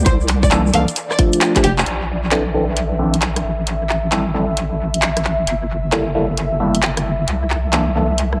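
An echo-heavy, spring-reverbed mix opens this soulful, skippy two-step UK garage excerpt at 133 BPM, where a deep, wobbling sine-and-square bass underpins an ethereal, sidechain-pumped pad holding sustained chords from C13 through Bbmaj9#11 and Gm69 beneath gritty, overdriven tine electric piano stabs under a filter sweep. A floating, sul tasto violin section, a tight up-front kick and a grainy egg shaker sound only in the opening seconds, and after a drum fill at 1.5 s and a band accent at 1.8 s the tape-warm garage kit's handclaps, hi-hat and rim clicks, present from the start, carry on through the rest of the excerpt.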